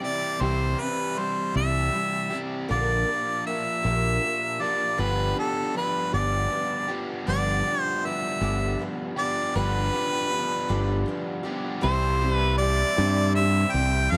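A clear, up-front harmonica carries the melody from the opening moment, its close-miked, punchy tone colored by light vibrato and scooped notes. Beneath it, a shimmering, octave-doubled twelve-string acoustic guitar is picked in accompaniment, while a double-tracked, overdriven electric guitar plays a compressed riff. A direct, punchy fingered electric bass joins at 0.4 seconds. This jangly, nostalgic cut of folk rock and heartland rock moves at a slow 52 BPM in a straight 6/8 in C major, with the harmony moving from C through Bb6 to G7. At 11.8 seconds the music returns to C and a new section begins, where a very quiet, reedy tonewheel organ with key click and a slow rotary speaker adds sustained chords up high. Light reverb gives the whole a small-room ambience.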